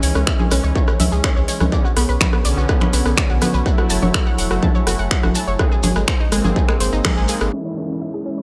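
Melodic techno at 124 BPM in 4/4, this short passage cut from a longer piece feels driving and dark, with tuning set slightly flat at A4 = 436 Hz. A distorted electronic kick sits up front beside a deep house kit of congas, finger snaps, rim clicks and metallic, overdriven hats that sound re-recorded in a large room, while a grainy shekere rattles in the background. A round, deep analog bass with tube saturation pumps against the beat, and a vintage, warbling sawtooth pluck spins bright arpeggios through chorus and dub echo. Brassy, bold pad stabs with vibrato share that echo, and a very quiet, moody ambient pad holds sustained chords underneath as the harmony moves from C#m through Bmadd9, F#m7 and G#add9. The full band accents at 7.0 seconds, the kick drops out at 7.1 seconds, and then the house kit and bass stop at 7.5 seconds, when a smooth, soft supersaw holds a single E4 and a downlifter drifts in behind it. 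Light reverb, digital ambience and a low-pass filter give the mix a dim, enclosed sheen.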